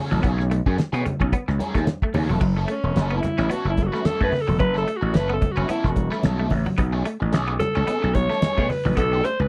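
Funk with a sly, swung groove: a cloth-damped, thuddy drum kit with dark cymbals and a fat snare sits under a gritty, overdriven slap bass that punches up front, while soft-handed congas tick in the background. A raw garage guitar with wah and overdrive comps beside a twangy, slightly broken-up second guitar playing a chorused riff over B13 and F#m7 chords. At 2.7 s a growling, raspy alto saxophone enters for a breathy, vibrato-laden solo, all captured in a dry, close 1970s-style studio sound.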